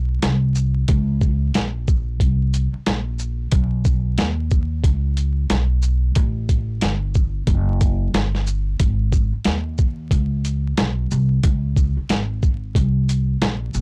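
A swung 91 BPM jazz-hop groove in 4/4 sets a mellow, smoky hip hop mood in this cut from a longer piece, with a woody, dark pizzicato upright bass up front from 0.0 seconds, joined at 0.2 seconds by a gritty, pitched-down boom bap sampler-style kit of thumpy kick, medium-tuned snare, hi-hat and shaker, all dry and blown-out with vinyl crackle and overdrive, shifting into a new section at 8.8 seconds.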